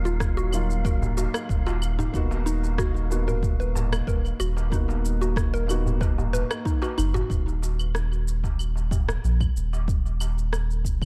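A straight 4/4 pulse at 93 BPM drives this hypnotic, organic downtempo excerpt in Eb minor, cut from a longer piece, with a deep, layered electronic kick, produced electronic shaker, rim click and claves in small room ambience, and a crisp, distant metal-shell darbuka played with soft hands. Underneath, a round sine sub bass sits up front with fast attack and sidechain pumping, running from 0.0 s to 11.1 s. Over the first 7.3 s, a felt-muted upright piano with audible action noise comps through Ebmadd9 and Bmaj7/D#, coloured by vintage 12-bit sampler grit, sidechain pumping and analog delay. A woody FM pluck adds mallet-like arpeggios treated with chorus, phaser and tape echo, while a breathy, wind-like tuned noise texture hovers dark in the background on F5 with its own built-in reverb. At 7.3 s the piano, pluck and texture stop, leaving bass and percussion on an Eb5 chord, all set in an echo-heavy digital ambience.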